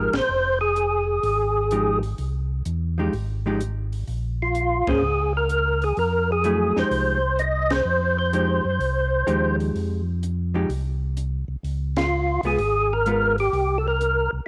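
A percussive tonewheel organ carries the melody up front, its fat, lightly overdriven tone marked by key click, third-harmonic percussion, chorus vibrato and a slow rotary speaker, while a mellow, round second organ holds down the bass with its own slow rotary and gentle grit. This smoky, late-night soul jazz organ trio swings at 127 BPM in F minor, with a dark, clean hollow-body electric guitar picking accompaniment until 13.4 seconds and a compact cocktail kit with a high-tuned snare and punchy kick sitting low in the mix. The band hits accents at 0.1, 4.8, 7.6 and 11.9 seconds over chords moving from Fm9 through Bbm7 and Db7 to C7, all in light reverb, in what is cut from a longer piece.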